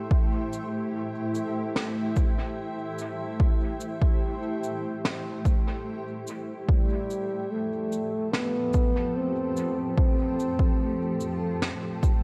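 A veiled, bucket-muted trombone solo enters at 6.7 seconds with dub echo over a hazy, spacious ambient dub excerpt, where a cloudy, detuned granular pad sustains Am7 and then Fadd9 chords, a punchy, layered electronic kick sits up front, and a dark cabasa and brushed snare with a rolled-off top drift through their own dub echo under light reverb.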